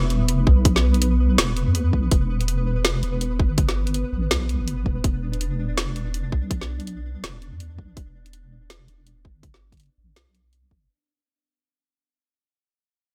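A half-time drum and bass groove at 164 BPM in 4/4, swung at 59% on the 16ths, sits on a single E minor chord, dark and spacious, fading out across this short cut from a longer piece. A layered kit with a woody snare and bright hats that has the sound of a small room enters up front at 0.1 seconds, joined at 0.5 seconds by a hard-clipped electronic kick, also up front. Underneath, a deep, saturated wobble bass with chorus holds the low end, while a pulsing, tempo-synced gated texture, bright and detuned with a slow attack and built-in reverb, glows higher up in light digital ambience.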